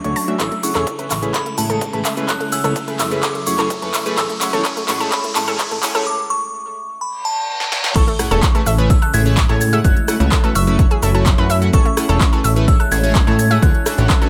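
Progressive house in a euphoric, hopeful mood, this excerpt from a longer piece opens with an eight-second build-up in which a filter sweep works across the arpeggios, the stabs and the pad while a riser climbs beneath the drum fills. A glassy, crystalline FM bell carries the melody high above the mix with chorus and tape echo, while a round, nasal analog pluck spins arpeggios through its own chorus and echo. A retro, glossy polysynth with a sub octave adds chorused stabs roughened by vintage 12-bit grit, and an evolving, warbling wavetable pad sits mellow in the background with phaser and built-in reverb. The harmony moves between Amaj7 and F#m7, and a brief break at 6.1 seconds leaves the chords out until a reverse cymbal leads into the drop at 8.0 seconds, which lands with an impact and later reaches a Dmaj7. Through it all, a punchy, funky analog bass pumps against the sidechain, an up-front electronic kick hits hard, and a big-room dance kit adds crisp hats, handclaps, rim clicks, shaker, crash and a punchy snare, all under a light reverb.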